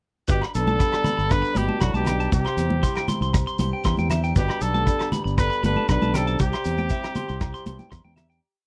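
At 0.3 seconds a carefree highlife guitar band starts up together at 118 BPM in a straight 4/4, moving between Gadd9 and C in G major. A bright, punchy trumpet carries a motif-based melody of call phrases, with light vibrato, up front. Beneath it, a raspy, growling trombone plays a harmony line mostly in sixths further back in the mix. A clean, twangy electric guitar picks patterned sixteenth-note arpeggios with a slapback echo, while a woody, boxy parlour acoustic guitar with old strings adds syncopated fingerstyle accompaniment in the background. A round, dark fingered bass sits up front with a syncopated riff over a dry soul kit with a tight kick, rolled-off top and rim clicks. A grainy shekere, ringing agogo bells in the background from 0.4 seconds and damped, high-tuned congas from 0.7 seconds complete the close, 1970s-style studio sound before the band fades out from 6.4 seconds.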